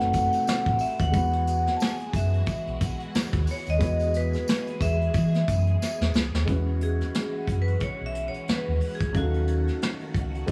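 A ringing, metallic vibraphone played with hard mallets carries the melody from the start, its slow motor vibrato trailed by tape echo, over a dark, mellow grand piano with audible action noise, a swirling sawtooth string machine with phaser and ensemble chorus, a round, amped fingered bass, and a brushed vintage kit with a punchy kick and rolled-off top. This lush 1970s-style soul excerpt sits at 90 BPM in E major with a swung 16th feel, opening on B7b9 before settling onto Eadd9, while a jingly tambourine sits in the background until 6.3 seconds. A drum fill at 5.8 seconds leads into a vibraphone solo from 6.5 seconds, with the harmony moving to D#m7b5 near the end, all framed by light reverb and small-room ambience.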